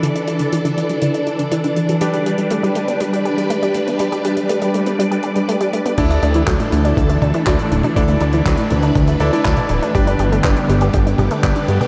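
Soaked in a huge, dreamy reverb, this playful, romantic italo disco excerpt opens with swirling, warbling string-machine chords up front, a round, nasal analog pluck arpeggio under a filter sweep, bright, clangy electric grand piano stabs in the background and a dry, damped 70s drum kit with dark cymbals, handclaps and toms, before a fat, detuned sawtooth bass and a gritty, overdriven electronic kick join at 6.0 seconds.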